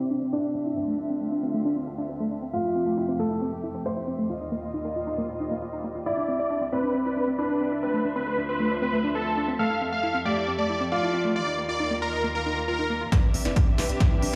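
Uplifting trance with a euphoric glow, where veiled, muted strings and a round, chorused analog pluck arpeggio ride sidechain pumping under a warm grand piano second line in a lush hall reverb, huge detuned supersaw chords take the melody up front from 6.1 s, and at 13.1 s a build-up arrives with a punchy overdriven kick, crisp hats and a snare fill, joined at 13.3 s by a tight sequencer bass.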